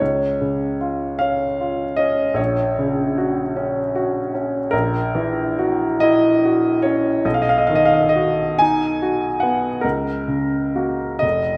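Serene and dreamy, this romantic classical nocturne excerpt in F# major unfolds in a rubato 6/8 at roughly 41-52 BPM, with a clear, natural baby grand piano playing solo up front through its full 11.6 seconds, its long sustain ringing into a wet recital hall reverb as the harmony moves from C# through F#7/A# and B before settling on F#/C# at 9.8 seconds.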